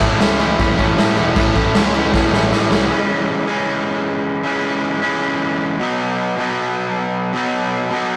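A straight 4/4 pulse at 155 BPM drives this energetic, rebellious punk rock excerpt, cut from a longer piece, where two overdriven semi-hollow guitars play riffs, one up front and one in the background, over a growling picked electric bass with overdrive and a raw garage drum kit with a punchy kick, medium-tuned snare, crash cymbal and a gritty, rolled-off top. A drum fill runs from 2.1 to 2.9 seconds, after which the bass, drums and background guitar drop out and the front guitar carries the riff alone until 8.2 seconds as the chords move from A to C#m to B. The rough rehearsal-room sound has tube saturation and a moderate stone room reverb.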